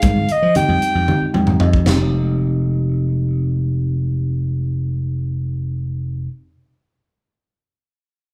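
Electric jazz fusion in 7/8 at 228 BPM, counted in eighths with a straight feel, this intense, funky fragment of a longer piece sits in F minor on an Fm9 chord. From the first moment, a breathy soprano saxophone plays a short solo, its subtone soft-attacked and whispered, intimate and up front, before falling silent at 1.3 seconds. A worn, slightly out-of-tune tine electric piano, lightly overdriven through its built-in speakers, carries the accompaniment and adds a fill alongside a drum fill from 1.1 to 1.9 seconds. Beneath them a growly, punchy slap bass sounds bright and amped, sitting forward in the mix through to the end. The tight funk kit, with a high-tuned snare, tight kick, hi-hat, splash cymbal and toms, plays with congas struck by hard hands on thick skins in the background; both drop out by about 2 seconds. A moderate reverb from a large studio gives the band, captured playing live in one room, a sense of shared space.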